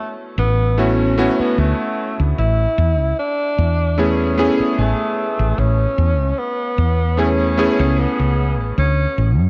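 Vaporwave at a slow 75 BPM in A major with a light swing, this nostalgic, faded excerpt sets a mellow, vibrato-laden tenor saxophone melody, grainy with vintage sampler grit and tape echo, over a bright, clangy electric grand piano with subtle chorus and a round, woody fretless bass entering at 0.4 seconds, all drifting through lush hall reverb and a cassette tape sheen across Dmaj13, Amaj9 and Dmaj7 chords.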